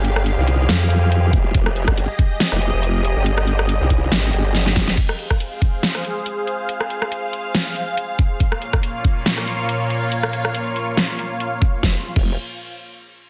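Menacing and heavy, this cut from a longer heavy wobble dubstep track opens straight into a drop with a half-time, lightly swung feel. A saturated, compressed formant-sweep wobble bass blends pulse and sine tones up front, while a lush unison pad of detuned sawtooth and square waves with a sub octave holds thick, bright sustained chords underneath, treated with chorus, phaser and sidechain pumping. The dubstep kit brings a huge snare, rim clicks, hi-hats and crash cymbals through low-pass filters, joined at 1.3 seconds by a layered, knocking electronic kick. A drum fill closes the drop, and at 5.0 seconds the bass drops out as a filter sweep runs over the drums while the pad moves from F minor to B-flat minor. The wobble bass returns briefly at 11.8 seconds over a final F minor, all within a dense, heavily limited master with light reverb.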